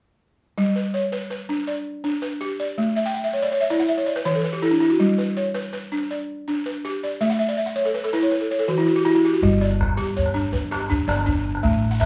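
A buzzing, close-miked balafon played with soft rubber mallets leads this joyful West African traditional piece, its dry, full arpeggios sitting up front from 0.6 seconds and ranging from E3 to G5. The music moves at 108 beats per minute in a straight 12/8 feel, in G lydian, with harmony shifting between G and A and short unharmonized passages where the balafon breaks into fills. At 9.4 seconds, a dark, thumpy pizzicato upright bass on gut strings enters low between G1 and A1, alongside a deep calabash that sounds distant, as if placed in a large room. The balafon remains the loudest voice throughout, with the bass and calabash set further back. A light studio reverb gives the sound a warm glow, and the recording is cut from a longer piece, ending at 12.1 seconds.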